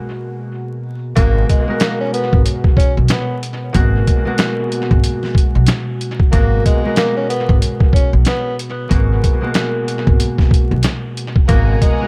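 Vinyl crackle and a small, echo-heavy room frame this dark, reflective boom-bap hip-hop excerpt in G# minor at 93 BPM, with a swung 16th-note feel. A ringing, fingerpicked concert harp with cassette-tape coloring and analog delay opens alone on a G#m9 break. At 1.2 s a gritty, pitched-down sampler drum kit with a thumpy kick arrives up front beside a woody pizzicato upright bass, while a breathy tenor saxophone carries a mellow, subtone jazz melody with vibrato and scooped notes through its own delay; at 11.5 s a soft-attack, bowed string section adds quiet sustained chords played sul tasto.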